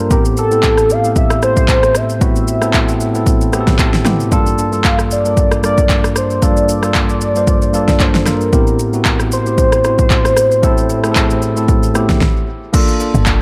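A velvety, wave-folded synth lead carries the melody of this hypnotic, soulful amapiano excerpt, its chorus and tape echo shimmering over a clean tine electric piano that also trails tape echo as the harmony moves between Am9 and Gm9. An overdriven deep house drum kit sits up front with a punchy kick, fat snare, handclaps, rim clicks, shaker, toms and crash, all in an echo-heavy mix with light reverb and digital ambience. After the lead stops at 12.2 seconds, a round, percussive log drum bass enters at 13.1 seconds.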